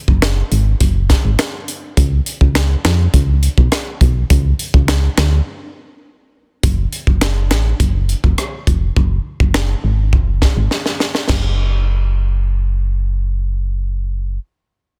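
A round, dark FM bass sits up front throughout this sultry, hypnotic dancehall excerpt, its digital tone striking with a fast attack and then decaying, pinned low in F# harmonic minor. It moves at 103 BPM in a straight 4/4 feel, beside a crisp fusion drum kit of kick, snare, rim click, hi-hat, finger snaps and china cymbal, recorded acoustically in a small, pumping room. The drums sound gritty and saturated, with bright cymbals, a high-tuned snare and a punchy kick pushed forward in the mix. A break arrives at 5.5 seconds before the groove moves into a new section, and a drum fill at 10.7 seconds leads into the final stretch, where the kit stops at 11.4 seconds and the bass carries on alone. The sound is dry with very little reverb, finished with a dense, heavily limited modern master, and the piece is cut from a longer work.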